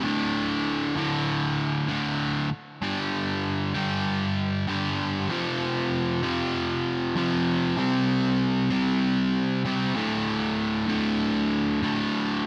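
Energetic and anthemic, this short rock passage features a single overdriven electric guitar playing alone in a straight 4/4 feel, its picked, double-tracked tone sitting up front with a warm edge. The guitar works through a sequence of power chords, moving from D5 to G5, F5 and C5 before landing back on D5 at 10.0 seconds, with a light reverb giving the sound a little space. Tuned slightly below standard pitch, it reads as a fragment lifted from a longer piece.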